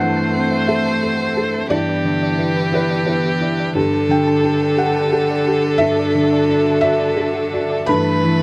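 A felt-muted upright piano sits up front, soft and intimate with audible action noise, carrying the accompaniment in this hopeful, tender 8.4-second fragment of a neoclassical piece in G major, set in a rubato 6/8 at 59 BPM. A single bowed violin sings the melody with smooth vibrato, alongside a solo cello on a second line, while a studio string section holds sustained chords in the background. A round, tine-like synth pluck with chorus and tape echo adds gentle, warbling arpeggios in the background, all captured by close, detailed microphones in light reverb.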